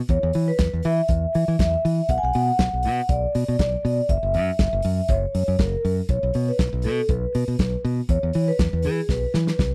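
Driving and glamorous, this dry, close 1970s-style disco excerpt at 120 BPM pairs a mellow, ringing soft-mallet vibraphone melody, shimmering with slow motor vibrato in a boxy small room, with a bright, punchy fingered electric bass and a dark, smooth soul drum kit of hi-hat, punchy kick and medium-tuned snare, moving through E5, Bm and F#5 to a chordless stretch and back to E5 before a drum fill at 9.1 seconds.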